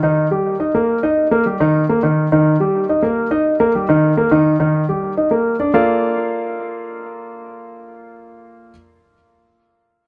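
Lively and danceable, this jazz cut from a longer piece moves at a brisk 210 BPM in 4/4 with a straight feel, in Bb major with tuning at A4 = 436 Hz. A concert grand piano plays solo throughout, warm with a deep bass and short sustain, sitting up front with a touch of tape echo across a range from Eb3 to F5. The harmony rests on Eb, shifts to Ebmaj7 at 4.6 seconds and lands on Bbmaj7 as a new section begins at 5.7 seconds, heard in a moderate club ambience.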